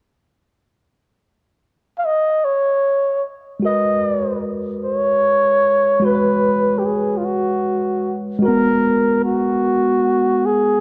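In a slow, straight 6/8 at 50 BPM counted in dotted quarters, this brief R&B fragment from a longer piece feels intimate and tender. A breathy flugelhorn carries the melody from 2.0 seconds, its mellow, whispered tone sitting up front with a light vibrato, soft attack and smooth top, touched by a slapback echo in a pop-style solo. At 3.6 seconds a tine electric piano joins as accompaniment on a G#m9 chord, its worn, slightly out-of-tune sound heard as if through built-in speakers yet clean and close. Both parts carry on together until the end at 10.8 seconds. A moderate plate reverb with a 2.8-second tail gives the dark production a soft, enveloping glow.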